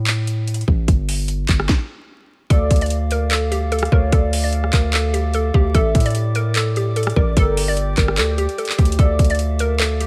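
Trap-flavored hip hop in D minor at 148 BPM with a half-time feel, this melancholic yet hard-hitting passage is cut from a longer piece. A distorted, saturated 808-style bass sits up front from the start alongside a trap drum kit of hard-clipped kick, sharp snare, handclaps, rim clicks and metallic hi-hats with a tape-warm edge. After a brief break and a stop from 1.7 to 2.5 seconds, the full arrangement arrives at 2.5 seconds over chords moving from Dmadd9 through Asus4 and Gm. A hollow, bouncy square-wave pluck carries the melody with chorus and digital delay, while a smooth, gliding portamento lead with vibrato traces a second line in the background until 9.4 seconds. Airy, distant flutes hold sustained chords alongside them, and a layer of vinyl crackle adds a dusty digital ambience to the whole recording.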